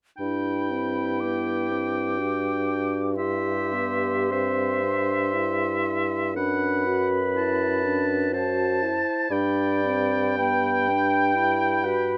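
From 0.2 s a wind quintet plays together in a lyrical, tender romantic slow movement in 3/4 with free rubato, cut from a longer piece: the hollow, pure silver flute carries the high melody with vibrato above a bright oboe second line; a warm, present clarinet and a mellow, distant French horn fill the accompaniment; and a dark, up-front bassoon anchors the bass, while the harmony moves from G through C/G and D7/F# back to G within light reverb.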